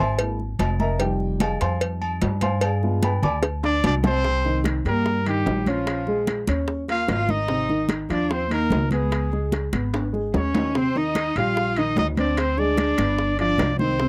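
A clear trumpet with light vibrato carries the jazz melody up front from 3.6 seconds, shadowed by a rich, nasal bowed cello that slides expressively on a second line in this sultry, driving Afro-Cuban jazz cut in C minor at 148 BPM. A dark, mellow baby grand piano leads the opening over a woody, thumpy pizzicato upright bass. Bright, damped congas sit in the background beside tight, high-tuned cowbell and bongos and ringing, vintage timbales and agogo bells, with a drum fill at 9.9 seconds, all in a dry, close 1970s-style studio sound with light reverb.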